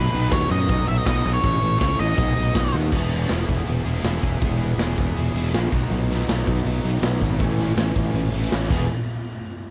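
A cassette home recording in a small room, this carefree, jangly indie rock fragment runs at 161 BPM in E major. A growly, punchy fuzz bass sits up front beside a boomy, saturated garage drum kit, while a bright, double-tracked fuzz guitar plays a riff throughout over chords moving between B7, Aadd9 and E. A dark octave-fuzz lead guitar carries the melody with tape echo until 2.7 s, and a very quiet tonewheel organ with slow rotary speaker holds piping chords at the start before returning at 5.9 s.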